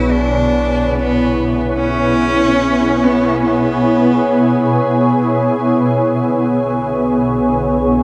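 Ambient in free time and B dorian, this melancholic, reflective excerpt sits in a vast cathedral reverb, where a shimmering, detuned pad holds sustained chords up front over a round, deep analog bass on B1 and a warbling, organ-like drone in the background. A clear, focused bowed cello with vibrato carries the melody between B3 and E4 through a diffuse ambient delay until 4.7 seconds. The bass fades out over the opening 5.2 seconds, while the pad and drone continue to the end at 8.0 seconds.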